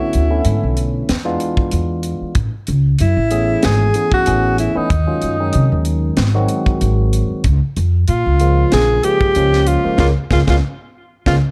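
Bright and slick, this electric jazz fusion excerpt at 94 BPM in a gently swung 4/4 features a clear alto saxophone carrying the melody up front with light vibrato, scooped notes and tape echo, over a barky, lightly overdriven tine electric piano with phaser, a woody, thumpy pizzicato upright bass on gut strings, and a crisp fusion kit with a high-tuned snare and punchy kick, moving through chords such as Cbm9, E7b9 and Amaj9 in a small room before a band accent at 10.0 seconds.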